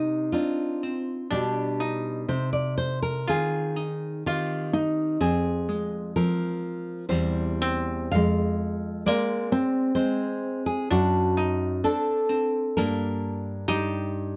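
A bright, full-bodied nylon-string guitar carries the accompaniment, its fresh strings ringing up front with an audible finger squeak as it spans from deep bass notes to high treble. Alongside it, a second nylon-string guitar sings the melody in a narrower middle register, its warm, fingerpicked tone sitting close and slightly softer in the balance. Together they form a romantic, melancholic classical duo in three-four time, played with a yearning rubato that lets the beats stretch and breathe unevenly. The harmony moves through minor chords darkened by passing inversions and a tense dominant color across the full 14.4 seconds. The sound is dry and intimate, like a close 1970s studio recording touched by light reverb, and this fragment is cut from a longer piece.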